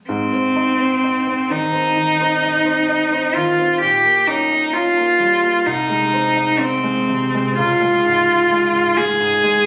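Romantic classical duo in Ab major at a rubato 65 BPM in 4/4, melancholic and solemn, where a smooth, bowed cello with vibrato carries the melody up front in its middle register while a quieter, intimate baby grand piano with audible action noise and short sustain accompanies from the bass upward, all heard in this brief fragment through moderate recital hall reverb as captured on a phone in the room with added club reverb and compression.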